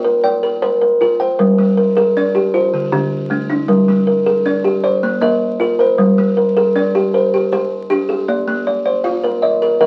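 A bright, buzzing kalimba with a solid board and an airy thumbnail pluck weaves arpeggios alongside a woody, hollow-boxed, mid-forward kalimba in this rippling, hypnotic southern African traditional piece in 12/8, cut from a longer performance and heard through the crackle of a very old 78 rpm record with moderate studio reverb, as the harmony cycles between Bb and G minor with a brief turn to D minor.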